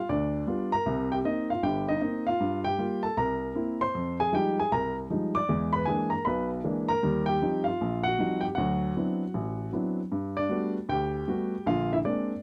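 Close, detailed microphones and a light reverb place a baby grand piano up front, where its natural, intimate tone carries audible action noise from the instrument itself. This is a short excerpt of solo jazz at 156 BPM in 4/4, with eighth notes swung at 64%, and the tuning sits at A4 = 442 Hz. The mood is relaxed and playful as the lone piano spans a range from G1 up to D6 across the full 12.4 seconds. The harmony moves through rich colors, from an opening G7 and Cm7 to Gm9, Fm9, E7#11, Eb69 and D13. Around 10.1 seconds a new section arrives on Gmaj9 before closing on Bb9, leaving the passage cut off mid-thought from a longer piece.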